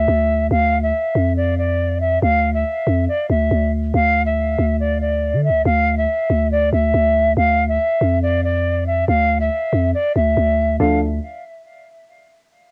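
Menacing and melancholic, this half-time trap cut from a longer hip hop piece moves at 140 BPM in D minor, with an airy, vibrato-laced silver concert flute carrying an unsteady, tongued melody through cassette tape grit and tape echo over a growling, buzzy 808-style bass, before soft, warbling electric-piano-like synth keys with chorus appear briefly at 10.8 s, all set in a moderate booth ambience on a home cassette recording.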